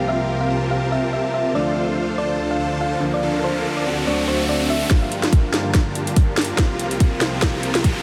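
Emotional and bittersweet, this future bass fragment in G minor moves at 143 BPM with a swung half-time feel, where lush, detuned supersaw chords with a cassette-tape tint, a clear grand piano and a rich, bowed chamber string section all pump under sidechain while a round, tine-like FM pluck with a warbling chorus carries the melody until 4.8 seconds, an electronic riser builds from 2.9 seconds, and at 4.9 seconds a hard-clipped, up-front kick joins a trap kit of sharp snare and metallic hi-hats for a drum fill and build-up under a filter sweep on the strings, all soaked in a huge, dreamy ambient reverb.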